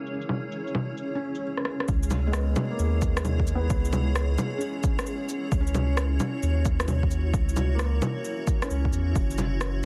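Future garage at 132 BPM in C# dorian, nocturnal and wistful, this cut from a longer piece opens on a mellow felt-muted upright piano under a filter sweep and a blurred, evolving granular cloud pad with built-in reverb, joined by an up-front layer of electronic shaker, bongos, rim click and cabasa with a soft-clipped, low-pass-filtered snare, until a drum fill brings in a punchy electronic kick and a round, deep sine sub bass at 1.9 seconds, with sidechain pumping on the piano, pad and bass, analog delay on the piano, and a dense, heavily limited master dusted with vinyl crackle as the chords move from C#m7 to F#7.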